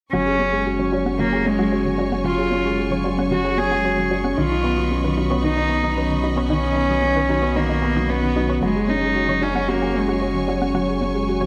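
Electronica at 113 BPM in a straight 4/4, tender and luminous, drifting from F#sus2 to Badd9 and back in a short passage cut from a longer piece. A felt-muted upright piano sits up front with a dark, intimate riff, its action noise audible through a low-pass filter and delay. Beneath it, a round sine sub bass holds the low end. A lush bowed string section sustains clear, vibrato-rich chords, and a very quiet analog pluck adds bright sawtooth arpeggios with chorus. A floating sul tasto cello carries the delayed melody until 10.5 s, all set in a moderate scoring-stage reverb.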